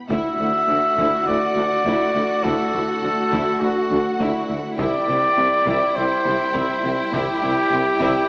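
Dark and relentless, this cinematic orchestral film-score fragment is cut from a longer piece and moves in a straight 4/4 pulse. A mellow, vintage-toned trumpet sits up front with soft-attacked stabs, while a violin section carries the melody high in its range with focused, vibrato-rich bowing. Behind them, a second violin line glides with expressive portamento, violas fill in smooth, even accompaniment, and a dark French horn section holds sustained chords. The low end is built from a clear tuba, a distant double bass section and a lush cello section, with compressed, saturated taiko drums struck with heavy sticks sitting in the background. The harmony moves from Dadd9 to C at 4.8 seconds, and the whole passage is bathed in a wet scoring-stage reverb with a small-speaker sound.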